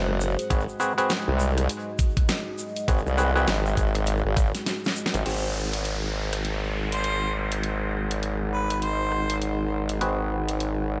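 A wobbling, overdriven formant-sweep wobble bass sits up front in this gritty, playful glitch hop excerpt with swung sixteenths, joined by a knocking electronic kick until 4.5 s, a dubstep kit with a huge snare, a grainy egg shaker in the background, stringy clav stabs that take on a filter sweep from 5.3 s and a dark analog pad pumping beneath, while the second half adds a downlifter, a deep ambient pad and a distant harmonica melody with light vibrato entering at 6.9 s, in an echo-heavy mix with light reverb.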